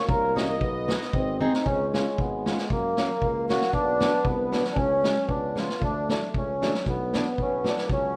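A mellow, reedy accordion sits up front carrying the melody, its tone chamber giving a slow beating to the sound, in this jolly, bouncy fragment of alpine dance-band folk cut from a longer piece. It moves at 115 BPM in a straight 2/4, driven by an up-front street-band drum kit with a boomy kick and a medium-tuned snare, its small-room sound mid-forward and its top rolled off. A drum fill at 1.4 s leads into the second section at 1.7 s. A euphonium plays a second line with light vibrato in a classical style, sounding distant and roomy, while a warm tuba supplies the bass underneath. From 0.4 s a fingerpicked, plugged-in jumbo steel-string acoustic guitar adds full-bodied accompaniment in the background. The harmony moves from F# through B and G# to C#, later taking in B minor, a C#sus4 settling to C#, and D, all set in a moderate recital hall reverb.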